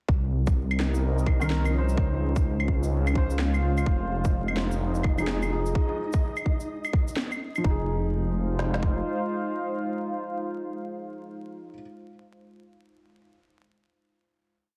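A muffled two-step kick and woody, overdriven snare sit up front beside a skittering, shuffled layer of electronic shaker, claves and snare, driving a nocturnal, ghostly future garage groove in which a menacing detuned saw bass pumps on sustained roots, a warbling, nostalgic tape-like pad carries slowly shifting chords, a felt-muted upright piano adds sparse, boxy chord stabs with tape echo and sampler grit, and a grainy, flickering high note hovers in the background from 4.3 seconds, until the drums and bass stop at 9.0 seconds and pad and piano hold a final chord over vinyl crackle.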